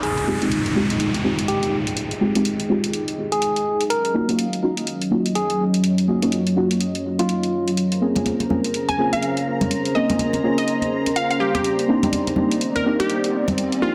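Deep house at 124 BPM in F minor with a swung, hypnotic feel, where a deep, full-bodied chord stab with a filter sweep and analog delay moves through Fm9, Ebm9, Bbm9 and Cm9 over a hollow, airy pad, a dark, moody ambient pad and an electronic hi-hat, while a bright tine electric piano carries the melody until 7.7 s, a silky string machine sits in the background from 7.8 s, congas with soft hands arrive at 8.2 s, a glassy, crystalline wavetable pluck with tape echo takes the lead up front from 8.9 s, and a downlifter and riser frame this short, densely limited excerpt in a wet digital room.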